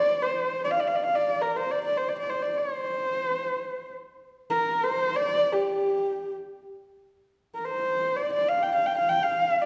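A lone bowed horsehead fiddle opens this brief, free-time fragment of Mongolian traditional music, its husky, boxy horsehair tone sitting up front with soft attacks, gliding portamento and expressive vibrato between G4 and G5, while a wet hall reverb with a 1.6-second decay lends the roughly 9.7 seconds a windswept, vast air.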